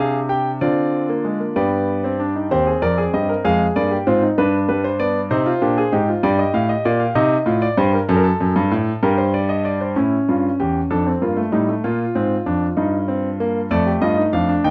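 Solemn and driving, this short excerpt from a longer classical work is a baroque-style four-part fugue for solo grand piano in C minor, moving in 6/8 at 64 beats per minute counted in dotted quarters with a straight feel. The concert grand sounds clear and natural, with a deep bass reaching down to Eb2, a long sustain, and a presence placed up front, while the melodic lines rise as high as G5. The harmony turns through minor-key territory, from Fm and Dm7b5 to G, then through Cm, Gm and F#m before shifting toward brighter chords such as A7, Bb7 and Eb/G near the close. An opening passage gives way at 2.5 seconds to a contrasting stretch, and the first material returns at 10.0 seconds, carrying on until the excerpt ends at 14.7 seconds. Light reverb and a dark production frame the instrument, lending the counterpoint a grave, enclosed character.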